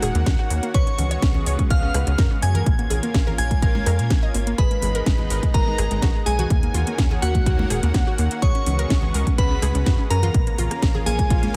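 A glassy FM bell melody with dub echo opens this driving, expansive progressive house excerpt at 125 BPM, over a soft airy supersaw line, a lush detuned pad, a round analog pluck arpeggio with tape echo and a tight wave-folded sequencer bass, all pumping against a punchy up-front kick from 0.3 s, alongside a house drum kit of cracking snare and metallic hats, while background congas join at 1.0 s, moving through D#m7, C#7sus4, A#m and G#m in a digital ambience.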